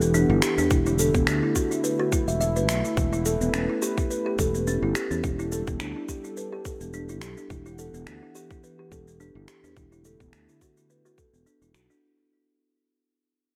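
A tight, tape-warm electronic kick enters at 0.7 s alongside electronic shaker and finger snaps, both re-recorded in a large room, setting a lightly swung 106 BPM groove in 4/4 for this hypnotic, meditative organic downtempo passage cut from a longer piece. Up front, a woody, hollow-toned kalimba plays low-pass-filtered arpeggios with digital delay, while a growly fretless electric bass sustains beneath. A detuned sawtooth analog pad with chorus, 12-bit sampler grit and sidechain pumping holds smooth chords under a filter sweep, in light reverb, as the music fades out over its 12 seconds.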